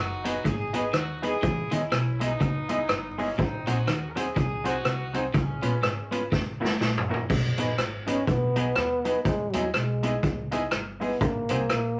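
A swung 123 BPM ska groove in B major carries this upbeat, joyful excerpt: a boomy, up-front street-band drum kit and a woody, pizzicato upright bass anchor it, while a brilliant upright piano with audible action noise punches out stabs, a compressed semi-hollow guitar adds hollow-body accompaniment through tube saturation and spring reverb, and a clean, picked electric guitar riff with dub echo sits in the background until 7.0 s. A loose, punchy horn section carries the melody until 6.1 s, the drums play a fill at 6.3 s, and a breathy, whispered trombone takes an intimate solo from 8.1 s, all over moderate studio ambience and vinyl crackle.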